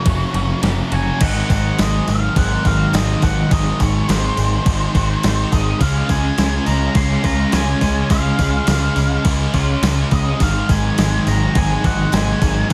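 A crisp, overdriven 8-bit drum machine sits up front with a thumpy kick, driving this wistful, blissful shoegaze and dream pop excerpt alongside a growling picked bass, while a dark octave-fuzz lead guitar carries the melody through distortion and tape echo. Beneath them, a thick fuzz guitar with ensemble chorus and a tight, double-tracked distorted guitar play riffs in the background. A very quiet overdriven semi-hollow guitar adds its own riff, a clean, twangy guitar plays fingered arpeggios, and a jingly vintage tambourine enters at 1.2 s as the harmony moves from Gb to Ab7 and Db, all bathed in a digital ambience.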